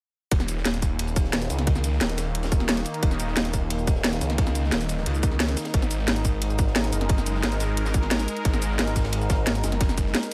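An overdriven, tight electronic kick punches up front through this aggressive, mechanical cut of dark technical drum and bass, alongside a drum and bass kit with a cracking snare and bright hats, a very quiet, gritty breakbeat kit with dark cymbals, a thick, swirling phased saw bass, and an airy, evolving pad holding chorused, sidechain-pumped chords under a light reverb.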